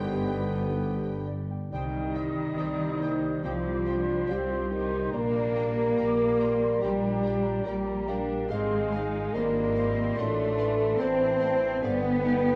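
Moving in a rubato 4/4, this solemn, melancholic fragment of a slow romantic orchestral movement sets a violin section's vibrato melody over second lines from a pure flute section, a lush, very quiet second violin section and a solo clarinet, with a mellow bassoon, a viola section and a concert harp's ringing, thumb-plucked arpeggios in the background. A dark French horn section holds sustained chords, a tight trumpet section adds soft-attack stabs that stop at 1.4 s, and an up-front cello section and a distant double bass section carry the bass. The ensemble sits in a wet scoring-stage reverb, colored by the worn, warbling pitch drift of old cassette tape.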